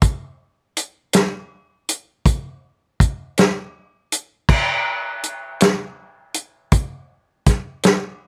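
An acoustic soul drum kit opens this smoky, soulful blues fragment, moving through a slow 12/8 feel with kick drum, snare, hi-hat and crash cymbal. The kit sits up front and mid-forward in a tight booth with light reverb, its punchy kick and medium-tuned snare rounded by a rolled-off top. A new section begins at 4.5 seconds, and the drums carry on until 8.0 seconds in this excerpt cut from a longer piece.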